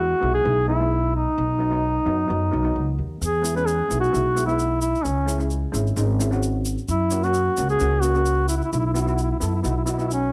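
A warm, up-front duduk carries the melody in a folk style with scooped notes, giving this sunny, festive calypso excerpt in E major at 131 BPM its voice, while a shimmering, metallic double seconds steel pan struck with hard rubber sticks adds accompaniment with a cassette-tape colour shared by the duduk. A woody pizzicato upright bass with steel strings sits up front beneath them, and a grainy, close and dry tube shaker joins at 3.2 seconds. The home cassette recording has a light reverb, and the chords move from Eadd9 through C#m and F# to a Bsus4 that settles on B.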